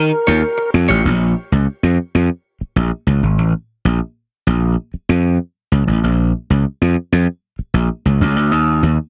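Hypnotic and cool, this straight 96 BPM funk cut in Bb dorian opens with a round, mellow tonewheel organ holding Bb4 through chorus vibrato and a slow rotary speaker for just 0.7 seconds, a clean, compressed electric guitar picking between F4 and Db5 with spring reverb from 0.3 to 1.0 seconds over an Eb9 chord, and a growly, overdriven slap bass up front that carries on alone over Bbm from 1.1 seconds, continuing once the harmony drops out at 8.5 seconds until 9.0 seconds in a dry, close 1970s-style studio sound.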